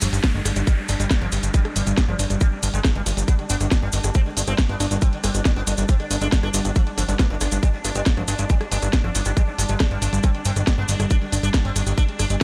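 This intense, hypnotic psychedelic trance excerpt opens with a buzzing, plectrum-plucked sitar melody shimmering in the background, a downlifter sinking behind it, a fat, sawtooth analog bass sitting up front, a drum kit with hi-hat, rim click and a cracking snare, and a grainy, band-limited cabasa. A tight, layered electronic kick drum arrives at 0.2 seconds, driving a straight 4/4 pulse. From the start, a woody, wave-folded pluck plays a warbling riff through chorus and analog delay, while a bright, detuned stepped-filter texture bubbles with sustained chords, and these two parts pump against the kick along with the sitar. The downlifter ends at 3.3 seconds, and a compressed, formant-swept wobble bass slips in barely audibly from 7.1 seconds as a second line. The mix carries a light reverb, and the sitar's phaser and tape echo add to the trance-like haze.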